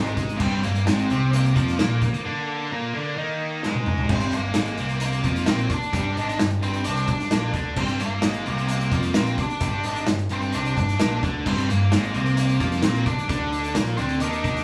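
Brooding and cathartic, this quiet-loud alternative rock excerpt drives at 130 BPM, with a warm, distorted octave-fuzz lead guitar carrying the melody over bright overdriven and double-tracked high-gain riffing guitars and a dark, thick fuzz guitar that drops out at 4.1 s and returns at 11.5 s, while a growling, bright picked bass and an up-front, punchy indie drum kit with dark cymbals and a pumping room sound play through a break from 2.3 s that ends in a drum fill, all captured as a band playing live in a small room.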